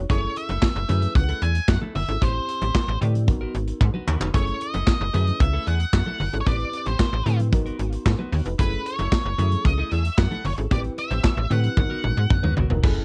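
Late-night and danceable, this early-eighties boogie funk cut moves at 113 BPM in F# dorian over a cycling F#m9, Am9 and G#m9 progression, driven by an up-front acoustic drum kit with a tight kick, medium-tuned snare, hi-hat, handclaps, crash and toms, plus fills at 3.8 and 11.8 seconds. A snappy FM bass with a metallic attack sits forward in the mix, joined by a soft, round FM electric piano with chorus, while a compressed clean electric guitar riff bathed in lush chorus and damped, thick-skinned congas fill out the background. Over the top, a dark octave-fuzz lead guitar carries the melody, and the cassette home recording keeps the whole track dry and close.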